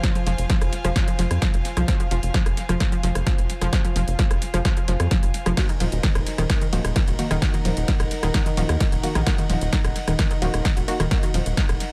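A dry, echo-soaked mix with little reverb frames this dark, driving slice of peak-time techno, cut from a longer piece. A dry, punchy electronic kick sits up front, joined by a layered techno drum kit of hi-hat, ride cymbal, rim click and snare, its tape-warmed hats carrying tape echo. A tight sawtooth sequencer bass enters at 0.3 seconds, mellow yet forceful and pumping against the kick. Behind it, a round, detuned analog pluck repeats a low riff through chorus and dub echo, while a bowed studio string section adds a rich, intimate bed with light vibrato and a soft attack. When the harmony shifts from Fm to Ebm at 5.6 seconds, a muted, deep dub chord stab appears in the background, colored by phaser, cassette grit and analog delay.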